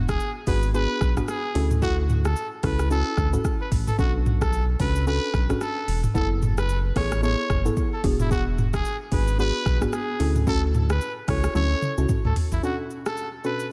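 Afrobeats at 111 BPM in 4/4 with a swung sixteenth-note feel, this mellow, smooth excerpt is cut from a longer piece. A growling trumpet carries the melody, its raspy, gritty tone sitting present in the mix with vibrato and a diffuse ambient delay trailing behind it. Underneath, a soft round pluck plays the accompaniment with a dark, decaying filter shape and a chorus effect, while a round analog bass holds the low end with a deep, up-front, sustained sound until 12.6 seconds. The electronic afro-pop drum kit combines a deep kick, metallic hi-hats, rim clicks, shaker and toms, with a drum fill from 11.6 to 12.6 seconds leading into a brief new section. The harmony moves through E7, Dmaj7, Bm7 and F#m11, all set in light reverb and digital ambience.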